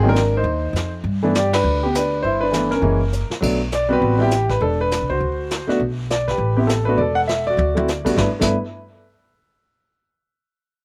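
Jazz piano trio in G major at a brisk 202 BPM swing, playful and swinging, with a smooth, deep-toned concert grand carrying the melody up front over a woody pizzicato upright bass and a vintage brush kit with dark cymbals and a punchy kick; the band hits an accent at 1.5 seconds, the drums add fills at 3.1 and 7.6 seconds, and the dry, close-sounding mix comes from a short cut of a longer piece.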